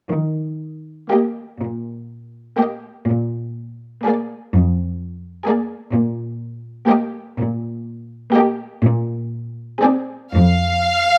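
Serene and lyrical, this slow romantic movement for string orchestra sways in 6/8 at 41 BPM in Eb major, its pulse loosened by rubato. A clear cello section lays down the bass from 0.1 s, and at 1.1 s the violins enter with a soft-attacked, expressive melody over a focused second violin line, while rich violas fill the accompaniment as the harmony moves from Eb through Bb7 and settles on Bbsus2. Close, detailed microphones and light reverb keep the lush, bowed sections up front in this passage cut from a longer piece.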